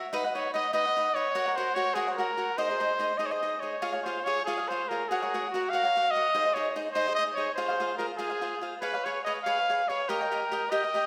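A warm, smooth-topped trumpet sings a classical-style solo melody up front over a bright, crisp, picked cavaquinho in this festive, romantic Mexican folk excerpt in Db major, flowing in a rubato 6/8 at 97 BPM through chords from Cb and Gb to Fm, Db7 and Eb, all bathed in the wet reverb of a recital hall.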